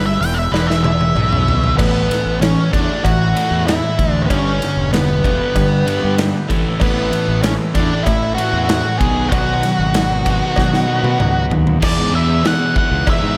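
A straight 4/4 groove at 96 BPM drives this swaggering classic rock passage, where an up-front octave-fuzz lead guitar with slapback echo opens with a solo over a punchy big rock drum kit with bright cymbals, a round fuzz fingered bass, two sludgy distorted guitar riffs, a faint metallic cowbell and a very quiet gritty tonewheel organ with key click and slow rotary, and a double-tracked crunchy guitar joins at 6.8 seconds as the chords move through E, A, G, A and B back to E, all in a big arena sound with concert hall reverb.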